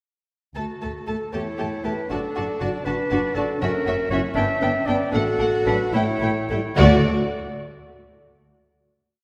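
A quick, graceful and lively classical-period orchestral movement in rubato 6/8, where two sul tasto violin sections with soft, floating, pure tone carry the melody and a second line alongside a solo clarinet, over a dark viola section's repeated notes in the background, an intimate double bass section up front doubling the bass line and a cello section's counter-melody entering at 1.3 seconds, while a French horn section adds tight, short accented chords from 1.1 seconds, set in a wet scoring-stage reverb before closing on a final chord at 6.8 seconds.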